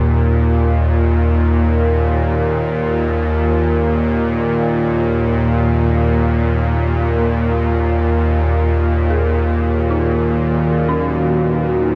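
Unfolding in free time, this dark, desolate ambient drone in Eb phrygian rests on a tense, string-like bowed drone held up front throughout, while an eerie, inharmonic detuned synth bell fades in from the start with background arpeggios through chorus, tremolo and delay, a deep, full-bodied pad enters with sustained chords at 10.3 seconds, and the whole short excerpt sits in a cavernous cathedral reverb.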